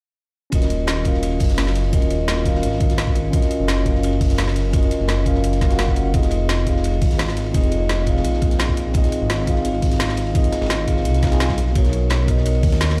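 A deep, rumbling detuned saw bass sits up front in this soulful, rolling liquid drum and bass excerpt, its sawtooth tone beating against itself with a fast attack and long sustain. Above it, a mellow tine electric piano plays clean, direct accompaniment through a tape echo, moving from Ebm9 to Fm7 and reaching Bmaj9 at 11.6 seconds. The beat is built from layered kits: an overdriven electronic kick with a knocking punch, a produced kit with a woody snare and bright hats pushed into overdrive, and a quieter acoustic breakbeat kit that sounds gritty and saturated, with dark cymbals, a medium-tuned snare and a rolled-off top. All the parts come in together at 0.5 seconds, and the kick drops out at 12.7 seconds, just before the rest. The whole mix carries light small-room ambience and the stony reverb of a big sound system playing in a bare room.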